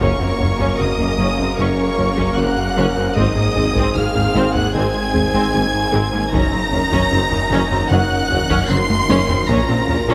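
A moderate scoring-stage reverb gives this brooding, vast excerpt of hybrid orchestral and electronic film score a sense of large space, moving at 76 BPM in a straight 4/4. Lush bowed violins carry the melody high above a second violin line, with focused violas filling the middle and rich, very quiet cellos and double basses anchoring the low end alongside a mellow, soft-attacked tuba. Clear trombones sit in the background holding sustained chords with a very quiet, close-miked French horn section and a cloudy, blurred granular pad, while a soft, round pluck traces gentle arpeggios. Underneath, a smooth, saturated synth bass plays a riff and a snarling, growling distorted saw bass adds an aggressive edge. Hard-stick taiko drums, dry and in the background, push the pulse and deliver a fill between 8.7 and 9.5 seconds as the harmony moves from Gb through Ab and Ebm7/Gb to Bbm.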